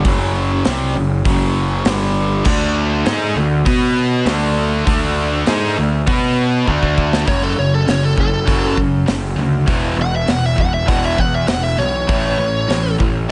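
Hard rock at 100 BPM in F# minor, driving and menacing, this excerpt opens with a fuzzy, overdriven bass and a punchy, up-front drum kit with bright cymbals under a background overdriven guitar riff, a very quiet double-tracked sludgy guitar and a faint tonewheel organ holding sustained chords through a slow rotary speaker, with a high-gain distorted guitar riff joining at 2.4 seconds. After a drum fill, the organ and sludgy guitar drop out at 7.3 seconds as a bluesy, distorted lead guitar takes an up-front solo with tape echo over F#m, E5 and A chords. The studio mix carries light reverb and a dark top end.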